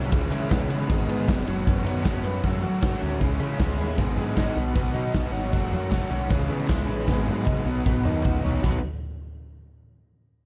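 A big, up-front rock drum kit with a punchy kick, medium-tuned snare and bright cymbals drives this wistful, jangly indie rock excerpt at 155 BPM in B mixolydian, playing a fill from 7.1 seconds. A bright, crunchy guitar riff with analog chorus sits beside a sludgy, dark distorted guitar, while a round, growling picked bass digs in underneath and a very quiet, buzzy vintage combo organ holds sustained chords with heavy vibrato. Hollow, close group handclaps appear faintly at 0.3 seconds and again at 5.9 seconds, all within a dark production with light reverb as the chords cycle through C#m7, G#m7, F#m and Badd9 before landing on B.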